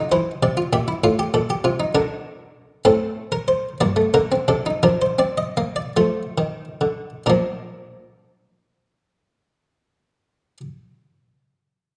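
A lilting six-eight pulse, felt in dotted-quarter beats with a straight feel, carries this joyful yet stately fragment of a baroque-style three-voice fugue. A single buff-stop harpsichord in the French style plays alone, its plucked, muted tone taking on a lute-like, dry quality. It sits up front in a moderate recital hall, whose reverb lends the close sound a gentle sense of space. From 1.9 seconds the music broadens as it slows down, moving through dominant-seventh and minor harmonies before arriving on a settled chord at 7.3 seconds, where a new section begins. The harpsichord's voices range from the low bass register up into the treble and fall silent at 10.6 seconds, leaving the hall's ring to close the passage.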